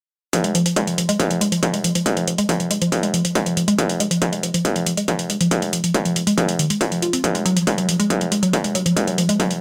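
An up-front mix with light reverb opens this excerpt of driving, industrial peak-time techno at 139 BPM in F phrygian, relentless from start to finish. A dark, woody, wave-folded pluck plays a riff between Eb3 and F4, thickened by chorus, overdrive, cassette tape and digital delay, pumping against the beat while a filter sweep runs across the whole passage. A distorted, high-passed electronic kick and metallic electronic hi-hats, the hats also pumping, drive the 4/4 groove from 0.3 seconds until the cut.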